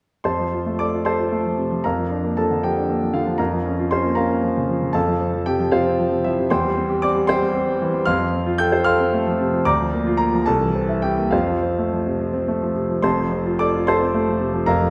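Bathed in a wet recital-hall reverb, this short cut from a longer classical virtuoso piano study features a clear, up-front solo concert grand, with deep bass and long natural sustain, ranging from F1 to G6 in a sparkling, heroic 6/8 with flexible rubato from 0.2 s to 14.9 s.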